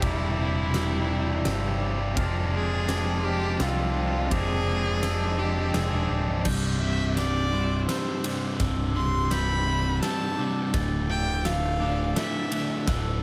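Cinematic and hopeful, this short post-rock passage in C major moves at 84 BPM in 3/4, with a rich, expressive violin singing the melody with vibrato and portamento over background glockenspiel and compressed twelve-string electric guitar arpeggios, both carrying plate reverb or tremolo and digital delay. A picked electric bass sits up front beside a huge arena drum kit with bright cymbals, a fat snare and a punchy kick, while a tight, bright distorted guitar riff gives way at 6.5 seconds to a crunchy overdriven guitar riff. That second half is a build-up that runs alongside a drum fill, with the harmony moving from C to Dmadd9.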